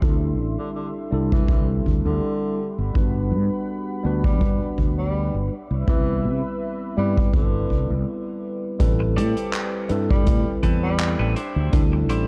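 This woozy, faded vaporwave clip, cut from a longer piece, moves with a gentle swing under a dark cassette-tape haze and a light, small-room ambience. A clean tine electric piano, heard as if through built-in speakers with a subtle chorus, carries the accompaniment. A thick, warbling unison sawtooth pad with slow attack, long release and a filter sweep holds sustained chords until 8.0 seconds. A round, punchy fretless electric bass with tube saturation sits up front beside a boomy acoustic kick. Over this, a distant, breathy tenor saxophone plays a jazz-style solo line with scooped notes, light vibrato and tape echo. After a brief stop, a soft-mallet kit with handclaps and hi-hat enters at 8.8 seconds, and a twangy, compressed clean electric guitar riff follows, drenched in lush chorus and analog delay.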